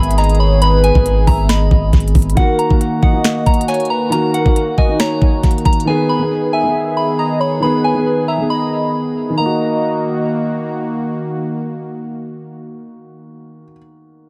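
Opening on a soft, pure FM synth bell melody with phaser and tape echo over a velvety sawtooth lead, a detuned analog pad, a deep sine 808 that stops at 2.4 seconds and an overdriven trap kit of knocking kick, sharp snare, crisp hats and finger snaps, this brooding half-time trap cut from a longer piece in Eb minor at 137 BPM brings in a dark, intimate grand piano with audible action noise at 2.4 seconds and sheds its drums at 5.9 seconds, all set in an echo-heavy digital ambience.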